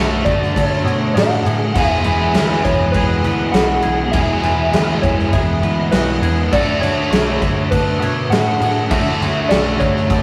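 A rough rehearsal-room recording in a wet stone room carries this blissful, dreamy shoegaze and dream pop fragment, cut from a longer piece, where a biting overdriven guitar riff and a thick fuzz guitar in the background ride over a round, foam-muted vintage bass and a big, up-front rock drum kit with a fat snare and punchy kick. A soft struck synth lead with a keys-like FM tone and chorus carries the melody from 0.2 seconds, while a twangy, compressed clean electric guitar plays arpeggios behind it. The harmony moves from Dmaj7 to Eadd9 and back to Dmaj7.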